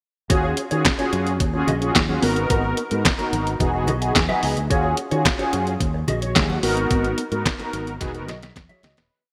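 A bright, digital early-eighties sound with a lush hall reverb frames this short, danceable boogie funk piece in Eb minor, moving at 109 BPM in a straight 4/4. A detuned 8-bit drum machine sits up front with a thumpy kick, a medium-tuned snare layered with handclaps, and hi-hat driving a four-on-the-floor beat. A fat, punchy fingered bass plays a syncopated boogie line with slides and chromatic approach notes. Mellow, brassy sawtooth synth brass, treated with chorus and phaser and carrying a filter sweep, holds sustained, syncopated rootless chords with short fills. A dark, clean, compressed guitar adds choppy sixteenth-note riffing in the background, while very quiet congas with soft hands and a thick damped skin enter at 0.9 seconds with a slap on two and open tones on four. The slick groove cycles through Ebm11, Abm9 and Emaj9, fading out from 6.9 seconds and ending on a drum fill at 8.0 seconds.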